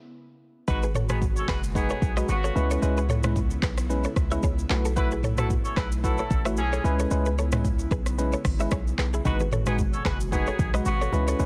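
Sultry and mellow, this afrobeats excerpt opens on a brief silence before an up-front, electronic afro-pop drum kit with deep kick, metallic hats, handclaps, rim clicks, shaker, toms and gritty sampler texture enters alongside a punchy, heavy 808-style bass, while a clean tine electric piano with analog chorus, an airy, breathy pad in the background, a warm picked guitar riff with tremolo and delay, and a tight vintage horn section carrying a second line with light vibrato fill out the dense, dry mix, and soft-handed congas slip in quietly at 9.3 seconds.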